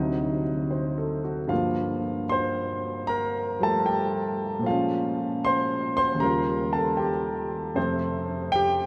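A warm, intimate grand piano opens this brief excerpt of solo jazz, playing alone for the full 8.9 seconds at 77 BPM in 4/4. The feel is swinging yet rubato, with a sophisticated mood as the harmony moves from D7b9 through Gm9, Bbm7 and Eb9 before arriving on F at 7.8 seconds. The piano spans D2 to C6 and sits up front with a natural tone, and the sound of its action is audible beneath the notes. It is bathed in a wet cathedral reverb with a 5.4-second decay, placing the instrument in a vast, echoing space. The tuning sits at A4 = 444 Hz, and the clip is cut from a longer piece.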